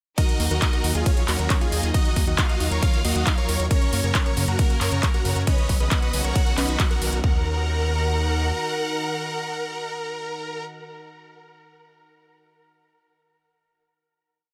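An overdriven four-on-the-floor kick and a programmed kit of metallic hats, handclaps and ride drive this short, soaring uplifting trance piece, with a galloping, gritty synth bass pumping beneath a huge, euphoric supersaw lead riffing in thirds and sixths through tape-worn dub echo, a bright violin section playing a second line in octaves, a thick chorused unison pad and a phased, detuned pluck arpeggio, before the kit drops out at 7.2 seconds and the lead, strings and pad ring on to 10.6 seconds, joined by the bass until it stops at 8.5 seconds.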